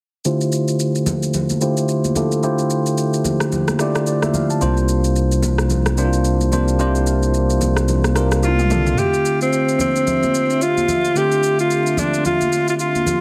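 Amapiano at 110 BPM in D minor with a late-night, hypnotic swing, this excerpt opens on a bell-like tine electric piano under lush chorus and a filter sweep over Dm11, joined by an overdriven deep house kit of rim click, shaker and toms and ringing, high-tuned congas in the background, while a saturated sub bass holds from 4.6 to 8.9 seconds under C7sus4, a drum fill arrives at 8.4 seconds together with a breathy, intimate alto saxophone melody with delay, and a hollow, flute-like pad settles in at 9.0 seconds, all through a heavily compressed radio sound with light reverb.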